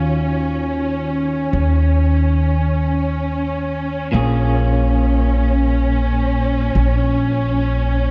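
Moving in free time, this short trip hop cut from a longer piece sits in Eb minor with a smoky, melancholic mood, shifting from Ebm9 to Bbm7 at 4.1 seconds. A thumpy, woody upright bass played pizzicato sits up front beneath a lush bowed string section holding sustained chords, while a slightly broken-up picked electric guitar adds accompaniment colored by tremolo and tape echo. Light reverb and studio ambience frame the dark, warm production across all 8.1 seconds.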